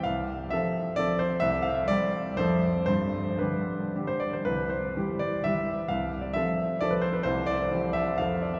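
A warm, natural baby grand piano plays alone, with short sustain, in this graceful, proud romantic classical excerpt: a triple-time dance in 3/4 with dotted rhythms and supple rubato at 108-142 BPM, moving through F over C, F, G and C in C major and ranging from C2 to F5, all bathed in the lingering wash of a wet cathedral reverb heard from further back in the room.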